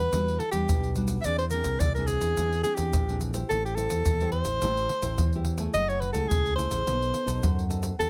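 A breathy soprano saxophone sings a bittersweet, jazz-style melody with vibrato up front, over dark, fingerpicked classical nylon-string guitar with audible finger squeak and a growly, overdriven fingered electric bass, while a tight surdo, pandeiro and tube shaker join at 0.1 seconds in this lively, dry and closely recorded samba and choro excerpt.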